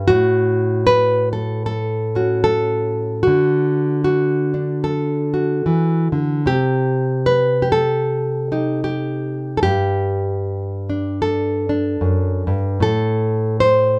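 Hopeful and warm, this brief folk excerpt features a solo nylon-string guitar, fingerpicked at an unhurried 76 BPM in 4/4 with a gentle swing, in G major. The guitar sounds dark and full-bodied with a deep classical tone, sitting up front in a close, detailed recording with little reverb. Across its 14 seconds it moves through A6, D, Cm, Gsus2 and Am.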